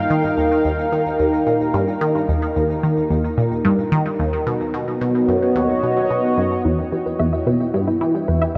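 Drenched in a huge ambient reverb with a long seven-point-eight-second tail and a cassette-tape haze, this short cut from a longer piece of ambient, sequencer-driven space music feels expansive and mysterious. At 110 BPM in a straight 4/4, a juicy, squelchy blip pluck sits up front with a low riff, its resonant filter pluck colored by ring modulation, phaser, tape echo and the grit of a vintage 12-bit sampler. Above it, a bright, evolving sawtooth pad with a sub octave holds sustained chords, its slow attack, filter swell and chorus lending the top of the mix a sweeping glow. Deeper in the background, a pulsing, tempo-synced unison texture adds a faint shimmer through chorus and its own reverb. The harmony moves from Eb to B at 4.5 seconds, then to Em at 6.6 seconds, where a soft, round, mellow pluck enters with gentle arpeggios blurred by chorus and tape echo.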